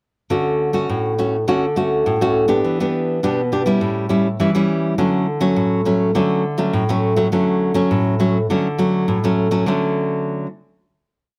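A solo nylon-string guitar, fingerpicked with fresh strings and placed up front in a close, detailed and nearly dry sound, carries this short, lively and sunny samba with classical thumb bass and syncopated plucked chords moving from Dmaj7 through Em7 and A7 back to Dmaj7 before a final chord arrives at 9.7 seconds.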